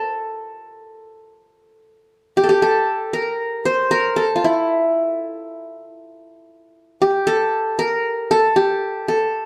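A solo qanun opens this short, longing fragment of Turkish music in 9/8, its plectrum-plucked triple strings sounding bright-edged and sitting up front. A slapback echo trails the qanun and light reverb surrounds it, all within a dark production. At 2.1 seconds the music moves into a new section that carries the soulful mood through to the cut at 9.5 seconds.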